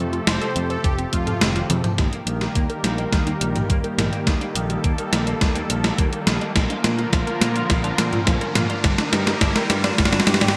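This moody, driving synthwave piece opens mid-flow on a detuned sawtooth pad that warbles with chorus and pumps with sidechain compression. Beneath it sits a round, amped picked electric bass with tube saturation, while a chorused, delayed analog pluck plays arpeggios in the background through a filter sweep. An up-front, gated 80s drum machine with a gated-reverb snare, hi-hat and toms joins a thumpy, tape-warm electronic kick, with a drum fill leading into the second section. A soft, evolving supersaw carries a brief melody from 0.3 to 1.7 seconds, and a clean semi-hollow electric guitar enters at 2.0 seconds with a picked riff, softened by analog chorus, delay and a filtered sweep. A very quiet riser creeps in from 4.9 seconds, and a wet plate reverb gives the whole mix a bright, 1980s-style digital sheen.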